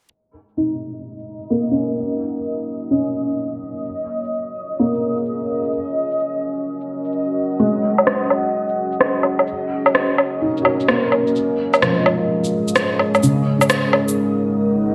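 Future garage at 128 BPM with a swung 16th-note feel, this wistful, melancholic excerpt sets layered electronic shaker, woodblock and rim click drums up front under gated reverb, a felt-muted upright piano that sounds soft, boxy and intimate as its filter sweeps across the whole passage, a deep, moody sawtooth-and-sine ambient pad with slow attack fading in over chords moving from G#m7 to F#69, and a faint reversed, granular swelling texture that shimmers brightly from 1.4 seconds, all in a lush hall with a glossy 1980s-style digital sheen.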